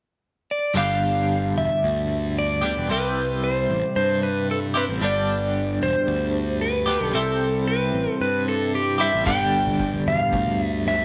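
A straight 4/4 pulse at 113 BPM carries this trippy, hazy psychedelic rock fragment in G mixolydian, cut from a longer piece. It rocks between G and C. Up front, a dark lap steel played with fingerpicks and slide sings the melody in volume swells with slapback echo, over a bright, compressed, double-tracked twelve-string electric guitar riff with tremolo and a fuzzy, overdriven picked bass. A distant, roomy soft-mallet drum kit with a punchy kick enters only at 9.3 seconds, all set in light reverb and a small room ambience.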